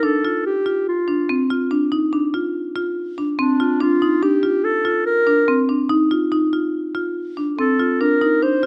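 Close, detailed microphones set the playing in a moderate recital-hall reverb, giving this short contemporary instrumental passage, cut from a longer piece, a shimmering, hopeful glow. A mellow clarinet carries the melody in a classical style, up front from D4 to C5, while a marimba struck with hard mallets plays bright, woody, percussive arpeggios between C4 and F4 on rosewood bars, close-miked and full. Both parts play throughout the 8.7 seconds, moving at 143 BPM in a straight 5/4 over an F5 chord.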